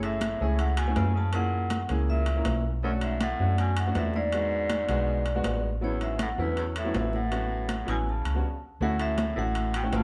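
This sunny, lively Afro-Cuban jazz excerpt opens with vibraphone, baritone saxophone, grand piano, electric bass, congas and timbales all sounding together at a brisk 160 BPM in a straight 4/4, centered on A major. The vibraphone carries the melody with medium hard mallets and the motor off, its tone metallic and ringing yet dark and smooth, while the baritone saxophone adds a second line with vibrato and a vintage jazz character. A clear, short-sustaining grand piano supplies accompaniment, and the hollow-body short-scale electric bass sits up front with a round, amped, dark sound. In the background, warm, high-tuned congas with a thick skin are joined by metal-shell timbales that ring out in a live room. The harmony moves from F#m7 through Bm7, E7 and A6, a stop falls at 8.4 seconds, and a new section begins on Dmaj9 at 8.8 seconds. A club reverb places the ensemble further back in the room.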